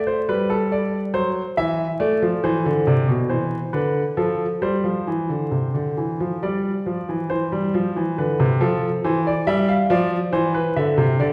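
Moving in a steady, straight 3/4 at 69 BPM, this brief classical fragment, cut from a longer piece, is a baroque-style two-part invention for solo grand piano in C major. The mood is solemn and serious, with the concert grand carrying everything alone from 0.0 to 11.3 seconds across a range from B2 up to F5. Its tone is warm and natural, with a deep bass, and it sits up front even though the listener seems placed further back in a recital hall whose wet reverb lingers for about 1.6 seconds. The harmony opens on A minor and passes through suspended and rootless shapes over D minor and G before settling onto C over E as a second section begins at 7.3 seconds, closing on an open F. A layer of vinyl crackle lends the sound an aged, archival patina.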